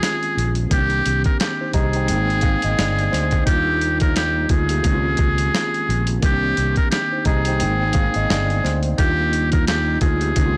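Nostalgic and soulful, this boom-bap hip-hop excerpt rides an 87 BPM swung groove in Eb major, with gritty, thumpy sampler-style drums up front and a buzzy, breathy muted trumpet singing a jazz-style melody with light vibrato through tape echo. A mellow tine electric piano heard through its built-in speakers carries the Dbmaj7, Cm7, Abmaj7 and Ebmaj7 changes, while a growly, punchy fretless electric bass with tube saturation joins at 0.4 seconds. The dry, overdriven recording sounds blown-out.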